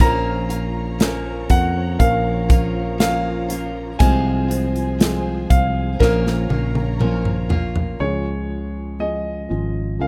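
A bright concert grand piano carries the melody from the first beat of this slow, emotional pop ballad in Bb minor at 60 BPM, with a brilliant, present tone and a short sustain. Beneath it, a felt-muted upright piano plays soft, mellow accompaniment, its action noise audible, while a round, dark fretless bass sits up front and a picked steel-string acoustic guitar adds arpeggios with occasional finger squeak. A lush string section holds sustained chords in the background, bowed sul tasto with vibrato and a soft attack. A polished modern drum kit, with a punchy kick and a medium-tuned snare, anchors the straight 4/4 feel and plays a fill from 6.0 to 8.0 seconds as the harmony moves from Bbm through Fm/C and back. At 8.0 seconds the drums, guitar and strings stop, leaving the two pianos and bass on a Db chord, and the longing passage breaks off at 10.1 seconds with the rough, homespun sound of a demo mix.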